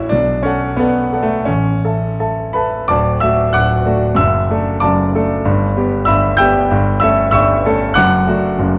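A clear concert grand piano sits up front in this passionate, lyrical romantic character piece for solo piano, its natural tone reaching down to a deep bass from D1 up to G6 with a short sustain. Moving in 2/4 at roughly 83-98 BPM with a flexible rubato feel, the D major music opens on Bm7 and A before settling onto D at 2.9 seconds and winding through Em7/G and A7/G back to D/F#. A wet recital hall reverb and dark production surround this brief 8.8-second fragment, cut from a longer work.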